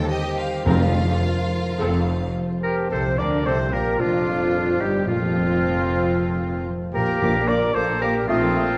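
Classical and dramatic, this fast romantic orchestral passage in Bb major moves at 110 BPM with an urgent, restless rubato feel. Lush, vibrato-rich violins carry the melody and a second line over ringing background harp arpeggios, joined at 0.7 seconds by distant violas, cellos and double basses, with dry timpani in the background. At 2.6 seconds a clear oboe, a soft clarinet and a trumpet adding stabs enter, and at 2.9 seconds a fuller section opens as an airy flute ensemble joins over a background bassoon and sustained French horn and punchy trombone chords, all in a reverberant concert hall with vinyl crackle.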